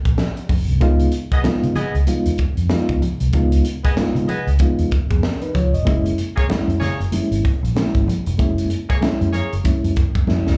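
A funky, playful groove with a swung sixteenth-note feel, this live club recording comes from a longer piece. A dark, round, foam-muted electric bass carries the low end with a punchy, amped tone. A crisp fusion drum kit keeps time on hi-hat, kick and snare, with a high-tuned snare and punchy kick sitting up front in a pumping small room. Bright, thin-skinned congas play in the background with soft hands and a touch of slapback echo. A mellow, reedy electric piano enters at 0.8 seconds with stabs shimmering through fast tremolo, and a clear, tight horn section adds a second line from 1.3 seconds. The chords move from Gb to Db9 and later Gb9, and a drum fill at 10.3 seconds closes the passage under light club reverb.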